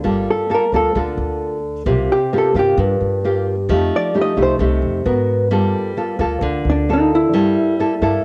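This short excerpt of a longer bossa nova piece opens with the nylon-string guitar and upright bass together, setting a smooth, melancholic mood in G minor at 132 BPM in a straight 4/4. The nylon-string guitar, thumb-plucked and classical in tone, sits up front as accompaniment with a cassette-tape coloring, moving through chords from Gm9 to C7sus4, F9, a brief Abm9, and back to Gm9 before settling on Gm69. Beneath it, the upright bass plays pizzicato on gut strings, woody and thumpy, holding the low end at a lower level. At 0.3 seconds the hollow-body jazz guitar enters with the melody, taking a solo in a clean, fingered, compressed electric tone that stays dark and up front in the mix. The whole is a home recording on cassette with light reverb.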